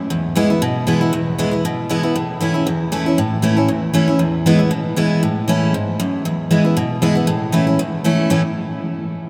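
A bright, full-bodied steel-string dreadnought guitar plays alone and up front from 0.0 to 8.4 seconds, its picked lines spanning E2 to E4 with audible finger squeak. This short bluegrass passage, cut from a longer piece, feels virtuosic and joyful, with a lightly swung eighth-note lilt over chords moving between E and A. A vast cathedral reverb with a 7.0-second decay makes the guitar ring out as though in an enormous, echoing hall.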